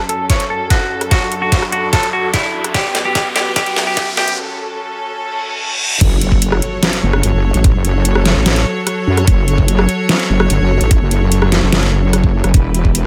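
A half-time 147 BPM pulse in 4/4 drives this chaotic, menacing heavy wobble dubstep fragment in F# phrygian, where a knocking electronic kick and a dubstep kit with deep snare and metallic hats sit up front beneath biting, bowed strings carrying sidechain pumping and a filter sweep, a bright, twangy clean electric guitar melody roughened by 12-bit sampler grit and digital delay until 4.3 seconds, and background risers, a reverse cymbal and an impact leading into the drop at 6.0 seconds, when a heavy, saturated, detuned wobble bass with chorus and overdrive enters up front, all set in a lightly reverberant room.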